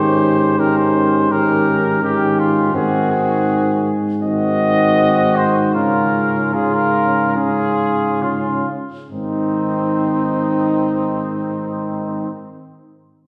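Heard from further back in a wet scoring-stage reverb, this noble classical brass quintet fragment in Ab major moves at 66-84 BPM in 4/4, slowing from 1.3 to 9.1 seconds, as an up-front vintage trumpet sings the melody with vibrato over a mellow second trumpet, a clear, present French horn in the background, a punchy trombone and a warm, roomy tuba holding Ab2, while the harmony passes from Eb7/Ab through Ab7 and Db/Ab to settle on Ab at 9.1 seconds.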